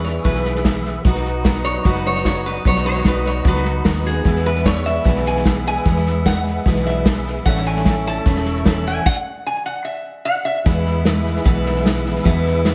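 A straight 4/4 honky-tonk groove at 150 BPM in E major carries this easygoing, down-home classic country excerpt: an up-front unplugged drum kit played with bundle sticks (punchy kick, medium-tuned snare, hi-hat and crash) joins at 0.1 s beside a dark, foam-muted, round electric bass, a bright, full-bodied picked dreadnought acoustic guitar with finger squeak, and a clean tonewheel organ with key click, chorus vibrato and a slow rotary speaker, while a metallic, nasal lap resonator guitar, played with fingerpicks and a steel bar through slapback echo, solos until a stop at 9.1 s, all set back in the room in a moderate plate reverb.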